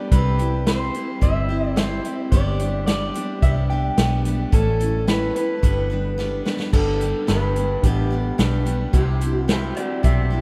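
An easygoing, nostalgic stretch of honky-tonk and classic country cut from a longer piece opens on a bright, full-bodied picked acoustic guitar with a touch of finger squeak, joined at once by a twangy, slightly broken-up electric guitar carrying the melody through a small old amp, a dark, round, foam-muted bass sitting up front, and a vintage drum kit with a punchy kick, medium-tuned snare, hi-hat and crash. At 109 BPM in a straight 4/4 and G major, the chords move from C to G to A and back through G to C, with the phrase repeating after a drum fill at 6.2 seconds. A moderate cathedral reverb places the band in a vast, echoing space, while the kit keeps a natural studio-room character with a rolled-off top.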